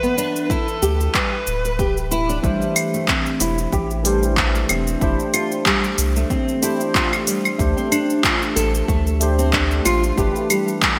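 Swung sixteenths at 93 BPM drive this hypnotic, mystical organic downtempo piece in A minor, where an up-front deep house kit of claves, handclaps, smooth hi-hat and shaker in gated reverb is joined by a punchy electronic kick from 0.5 s and a round sine sub bass, while full-bodied, fingerpicked classical nylon-string guitar arpeggios with finger squeak take on a filter sweep, a bowed kamancheh sings a short opening melody with vibrato and portamento, and a barky, clean tine electric piano with analog chorus and sidechain pumping enters at 2.4 s over chords moving through Am7, Fmaj9 and Dm7, set in a lush hall reverb with a bright 1980s-style digital sheen as a metallic bronze singing bowl rings softly in the background.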